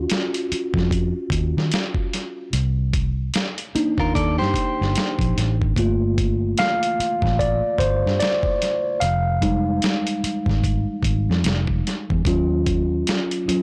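R&B and neo-soul at a relaxed 74 BPM with a swung sixteenth-note feel and a smooth, late-night mood, this excerpt is led by a worn, slightly out-of-tune tine electric piano soloing up front over minor ninth chords moving from Ebm9 through Cm9, Gm9 and Fm9, while a dark, round, foam-muted fingered bass gives punchy low support, a gritty, compressed sampler-style drum kit with a thumpy kick and medium-tuned snare adds overdriven grit, and a bright, picked clean electric guitar appears briefly between 4.0 and 5.6 seconds, all set in light reverb within a blown-out, overdriven recording.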